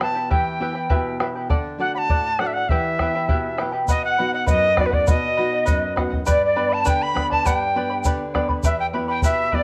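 A bright, reedy cane quena carries the melody up front, its end-blown tone airy with vibrato and tongued notes, colored by cassette tape. This earthy, melancholic Andean folk piece moves at 101 BPM in a straight 2/4. A fingerpicked charango shimmers on double strings, while a nylon-string guitar adds a deep classical low end with audible finger squeaks, and a round bombo sits up front to anchor the pulse. At 3.9 s a bamboo pan flute joins as a distant second line with soft, chiffy attacks, and a grainy egg shaker enters quietly from a live room. The harmony moves from E minor and D into B and G before returning to E minor, heard through a moderate spring reverb on a home cassette recording cut from a longer piece.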